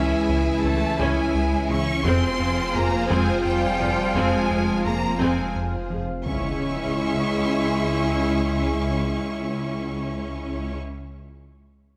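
Opening on lush bowed strings, a shimmering chorused pulse-width pad, mellow distant French horns and a rumbling detuned saw bass, this vast, futuristic hybrid orchestral and electronic cue in a slow 6/8 carries an expressive violin melody with vibrato and portamento over a round analog bass riff that stops at 6.1 seconds, just before a huge, dark impact lands at 6.3 seconds in a moderate scoring-stage reverb.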